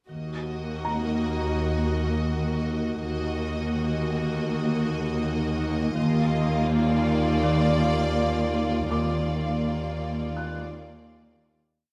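Closely miked with light reverb, this uneasy, mysterious suspense film cue sets a rich violin section and a warm second violin section in smooth, sustained bowed chords above a clear viola section in the background, while a smooth cello section and a lush double bass section hold the bass line and a marimba with medium mallets pulses an ostinato beneath sparse single notes from a soft, felt-muted upright piano with audible action noise, before an eerie, metallic, very quiet low drone creeps in at 2.2 s and the whole piece fades out from 8.9 s.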